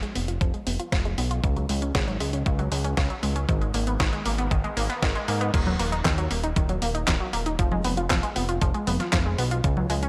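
A straight 4/4 italo disco groove at 117 BPM opens this danceable, bittersweet excerpt, with a clean 12-bit drum machine laying out congas, handclaps, hi-hat, crash and a fat snare, joined at 0.4 seconds by a thumpy, tape-warm electronic kick. A lush, punchy detuned sawtooth pluck spins arpeggios through phaser and delay, its filter sweeping across the first 5.5 seconds, while a thick, nasal analog bass enters at 0.2 seconds with a mellow, sustained tone. The harmony moves from Fdim through Dbsus4 and Abmadd9 to Ebm in the second half before returning to Fdim, all set in light digital reverb.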